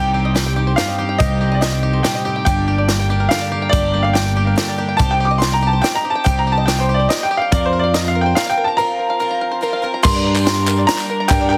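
Indie folk in a yearning, bittersweet mood, this short excerpt moves at 142 BPM in a straight 3/4 in G minor, its arrangement building as it goes. A woody upright piano with audible action noise carries the melody through an analog delay, set over a growly, up-front fingered electric bass. Beneath it, a full-bodied fingerpicked jumbo steel-string guitar plays only until 5.0 s, while a shimmering, octave-doubled twelve-string guitar and a twangy bluegrass banjo playing arpeggios sit alongside. A compact cocktail drum kit, dry with a high-tuned snare and punchy kick, enters at 0.4 s, and a break arrives near 8.8 s before the chords settle from C minor through F suspended back to G minor. At 10.0 s crisp group handclaps and a jingly tambourine join in the background, and at 10.1 s a very quiet, reedy bowed string section adds sustained chords. The whole mix has light small-room reverb and a heavily compressed, radio-like sound.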